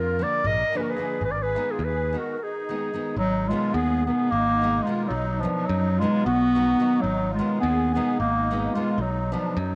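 Balkan folk in the manner of a Balkan wedding band, this restless, virtuosic excerpt moves at 216 BPM in a straight 7/8 in Ab dorian sharp4, with a soft-attacked, classical-style clarinet up front carrying the melody over a reedy, shimmering musette accordion second line, a growly, punchy picked electric bass and a fingerpicked nylon-string guitar with fresh, bright strings. A large clay-shell darbuka played with soft hands sits in the background only until 2.3 seconds, when a break leads into a new section at 3.2 seconds, and the chords shift among Bb, Abm and B. The clarinet carries a cassette-tape colour, and the whole has the light, small-room reverb of a home recording on cassette.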